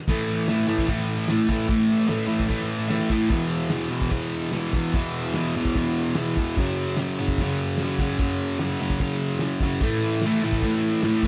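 A thick fuzz guitar leads this raw, rowdy stretch of garage rock, its bright, distorted, double-tracked riff sitting up front and running low, from E2 to A3, through the whole cut from 0.1 to 11.3 seconds. The picked tone carries heavy fuzz, and the riff moves over power chords on A, E, F# and back to A in A major. Beneath it, a cloth-damped drum kit thuds along with a tight kick, a fat snare, a hi-hat and a crash cymbal, its dry, dark character and rolled-off top keeping the cymbals subdued. The tempo sits at 148 BPM in a straight 4/4. The sound is that of a band playing live in one room, with a moderate studio ambience around the players. The passage is lifted from a longer piece.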